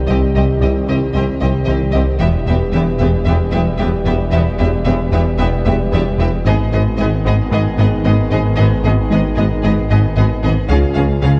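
A rubbery, hollow square-wave bass riff and a thick, beating detuned saw bass drive this tense, relentless hybrid orchestral and electronic film cue at 113 BPM, moving through Cm, Em, Abm and Db beneath a lush bowed violin melody with a second violin line in the background and smooth viola accompaniment. Dark French horns and a very quiet bright trombone section hold sustained chords, while distant cellos, double basses and a mellow tuba reinforce the low end and a tine-like FM synth pluck plays very quiet arpeggios. A barely audible sub drop and riser, heard at the start and again at 11.4 s, frame the passage, which sits in a moderate scoring-stage reverb with worn, warbling cassette-tape pitch drift, cut from a longer piece.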